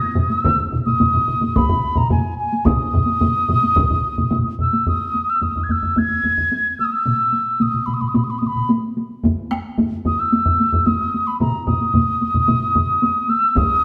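Recorded live with the whole band in one room, this clip from a longer piece carries a stone-room reverb. It is powerful, driving Japanese traditional music for a taiko drum ensemble in a straight 4/4, tuned slightly sharp with A at 444 Hz. A mellow, hollow wooden piccolo sits up front and carries the melody throughout, its pure tone softened by rolled-off highs and shaped by vibrato and tongued notes between Ab5 and Ab6. Beneath it, four taiko parts enter within the first half-second: two struck with hard sticks and two with heavy sticks, all acoustic and miked close, with two of them heard especially dry. One hard-stick drum drops out at 3.9 s and returns only for a brief final hit at 13.6 s, while the others carry on through a second section that begins at 4.9 s.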